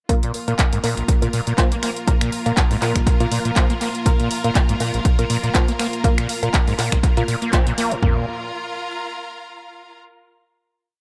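An echo-heavy mix with light reverb frames this short, hypnotic and driving acid house piece. A punchy, tape-warm analog drum machine sits up front with a four-on-the-floor kick and floor tom, joined by programmed closed and open hats, claps and snaps carrying tape echo. Over it a squelchy, gritty, saturated acid bass runs a 16-step line with accents and slides, while a muted, detuned dub chord stab plays dotted-rhythm chords and a lush vintage string machine pumps with the sidechain in the background. A clear, bowed studio string section with vibrato shifts slowly between chords in the background throughout, and after a band accent at 7.5 seconds the groove ends at 8.0 seconds, with the strings carrying the final chord until 10.0 seconds.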